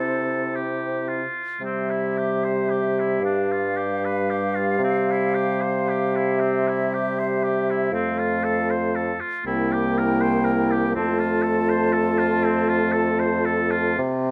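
A slow, romantic classical movement for wind quintet in C major and 6/8 at 39 beats per minute, serene and tender, with rubato that lets the beats stretch unevenly. A pure, hollow silver flute with vibrato carries the melody above an up-front oboe of light vibrato and vintage color on the second line, while a soft-attacked French horn and a smooth-topped clarinet, the latter set further back, fill in the accompaniment, and an up-front bassoon holds the bass, continuing until 14.3 seconds. Close, detailed microphones catch each player within a moderate recital hall reverb, as the harmony moves from C through G7 and C7 to settle on F in this short excerpt cut from a longer piece.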